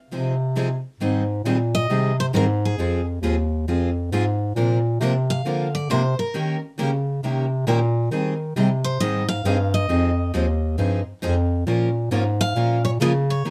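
Acoustic string swing in the jazz manouche style, this bittersweet excerpt moves at 135 BPM in Ab major, with a picked steel-string guitar carrying the melody up front in a bright, full-bodied dreadnought voice. Two more picked steel-string guitars accompany it, one warm and concert-sized up front, the other bright with fresh strings and finger squeak set in the background. Alongside them, up front, a dark bass clarinet holds the bass line with light vibrato, subtone, scooped notes and a smooth top, all caught by close, detailed microphones with light reverb.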